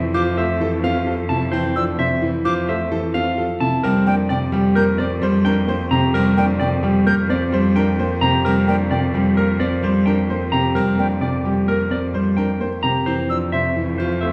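A wet recital-hall reverb surrounds this bright, hypnotic stretch of minimalist pattern music, cut from a longer piece and set in a straight 5/4. Up front, a dark, worn concert grand piano carries the accompaniment in its lower register, its action noise audible above a deep bass, while a second grand piano, clear and boxy, spins arpeggios higher up. A rich bowed cello holds a single focused bass note with vibrato throughout. A clean, twangy electric guitar, played fingered, takes the melody from 0.1 seconds, and a mellow silver concert flute with a crisp attack and a pure, expressive tone adds high arpeggios until 13.6 seconds. The harmony rests on Fmaj7 before shifting to Gm/F at 3.8 seconds.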